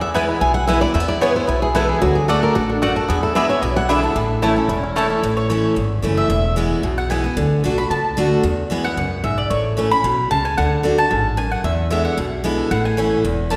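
A bright, double-strung mandolin punctuates this lively, joyful bluegrass excerpt at 224 BPM in A major with stabs before taking a solo from 5.2 s, after a twangy, fingerpicked banjo in the background and a dark, old-stringed, up-front guitar carry the opening melody, while a bright, full-bodied dreadnought guitar plays accompaniment and a woody pizzicato upright bass anchors the low end, all set in the lush reverb of a church or concert hall.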